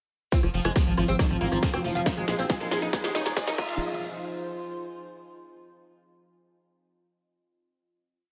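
Intense and psychedelic, this short psychedelic trance piece at 138 BPM in F minor is a single build from 0.3 s that resolves into a final note from 3.8 s, carried by the warbly tape-like pad, which sustains until 5.5 s. An overdriven four-on-the-floor electronic kick sits up front with a techno drum kit of cracking snare, metallic hats, rim and crash playing a drum fill, close grainy maracas in sixteenths, and a round analog bass rolling in sixteenths. A buzzing, shimmering sitar repeats a riff over a pedal note through phaser and tape echo, joined by a woody wave-folded pluck playing an acid line with a filter sweep, a bubbling stepped-filter drone, the nostalgic pad's slowly shifting chords, and a background riser from 2.2 s.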